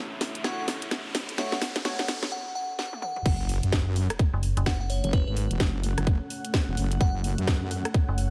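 Swung sixteenths in 4/4 drive this gritty, bouncy bass house fragment, opening on a build-up where a garage drum kit with a cracking snare, toms and hi-hat rolls through fills under an electronic riser and sub drop. A moody, very quiet analog pad, a cloudy granular pad, a filtered digital ambience, a crystalline synth bell melody and hollow, nasal organ stabs that stop at 2.1 seconds fill out the upper layers. At 3.3 seconds the drop lands with a tight, up-front kick and a heavy, saturated wobble bass pumping against the sidechain, while a metallic FM bass jabs in briefly at 4.3 seconds.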